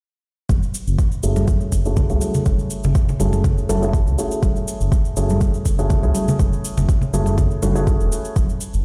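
This short cut from a longer afro house track sounds as if it is played through a big sound system in a bare stone room, with light reverb. At 122 BPM in 4/4 with a straight feel, it rests on an F#m7 chord in F# minor, and the mood is earthy. From 0.5 seconds, an up-front, deep electronic kick and a layered cabasa, both overdriven and re-recorded in a small room, play together with bright, close congas struck with hard hands. Underneath, a rumbling detuned saw bass in unison beats and pumps with sidechain compression, its saturated tone moving through a filter sweep. From 1.2 seconds, a felt-muted upright piano adds short, mellow stabs between A3 and A4; it also pumps, and it is low-pass filtered, trailed by tape echo and moved by its own filter sweep.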